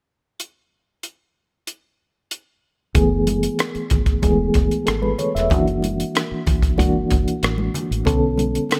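A compact cocktail drum kit opens this fragment of lush, 1970s-style soul at 0.4 s, its dry hi-hat, rim click and punchy kick sitting up front. At 2.9 s a mellow, reedy electric piano joins, shimmering with a fast tremolo through its built-in speakers and also placed up front, alongside very quiet congas that sound ringing, medium-tuned and close. A deep dub fingered electric bass arrives at 3.0 s, dark and round, with a foam-muted, amped tone. The harmony moves from F#m11 through F#7alt to Bm9, giving the smooth, straight groove a bittersweet cast. A small room ambience surrounds the parts.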